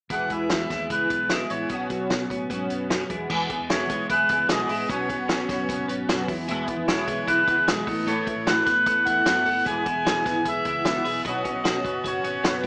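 A reedy, breathy melodica sits up front and carries the melody through this short, nostalgic and bright excerpt of jangly indie pop, moving at a straight 151 BPM in 4/4 in E major. Beneath it, a fingerpicked twelve-string acoustic guitar shimmers with octave-doubled strings, audible finger squeak and an analog chorus, while a clean, compressed, twangy twelve-string electric guitar spins out picked arpeggios. A vintage drum kit with a fat snare, punchy kick, hi-hat and crash sits close with a rolled-off top, and a dark, round, foam-muted fingered electric bass stays in the background. The harmony circles between E and Bsus2, with a turn to Asus2 after the section change at 3.3 s. A moderate club reverb and a small-speaker sound give the whole a compact, vintage feel.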